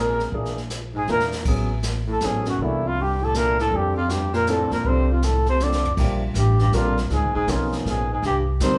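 A dark, lightly vibratoed trumpet carries the melody over a breathy, scooped subtone baritone saxophone line, intimate grand piano with audible action noise, and woody gut-string pizzicato upright bass in this playful, sophisticated excerpt of small-group swing and bop jazz in 3/4 at 159 BPM in F major, with a brushed drum kit of dark cymbals and a boomy kick entering at 0.2 s, adding fills at 1.1 s and 5.6 s, and the tune moving into a new section at 6.0 s, all heard as a live band in a large, moderately reverberant studio room.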